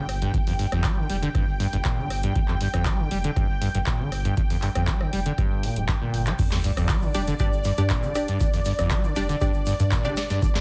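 A squelchy, resonant sawtooth acid bass riff with tube saturation and tape echo sits up front in this hypnotic, gritty acid house excerpt in G minor at 119 BPM, pumping over a deep sine sub bass, a lush detuned unison pad holding sustained chords with chorus and phaser, a booming analog drum machine with crisp snare and metallic hats, and a deep electronic kick, while a drum fill at 5.9 seconds leads into a drop at 6.4 seconds marked by a very quiet sub drop and a grainy egg shaker, with a muted, filtered dub chord stab entering at 7.1 seconds, all under light reverb and a heavily compressed radio sound.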